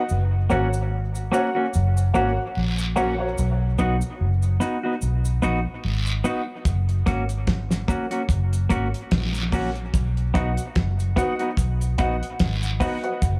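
Laid-back and hazy, this dub reggae excerpt moves at 73 BPM in B major with a gentle sixteenth-note swing, cycling between F# and B chords. A clean, hollow-body semi-hollow electric guitar plays accompaniment and a dark, woody upright piano with audible action noise adds stabs from the start and again at 10.3 seconds, both soaked in dub echo alongside the saturated cabasa and guiro, while a round, foam-muted fingered bass sits up front. At 6.7 seconds a cloth-damped, thuddy drum kit with a fat snare, tight kick and hi-hat joins, all set in a small room with light reverb.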